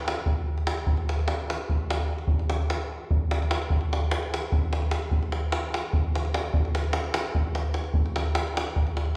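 A tight, up-front acoustic davul plays alone from 0.1 to 9.1 seconds in this brief clip of Balkan folk in a straight 7/8 at 297 BPM (eighths), its virtuosic, bittersweet pulse hanging in the long, wet reverb of a recital hall before a new section arrives at 7.9 seconds.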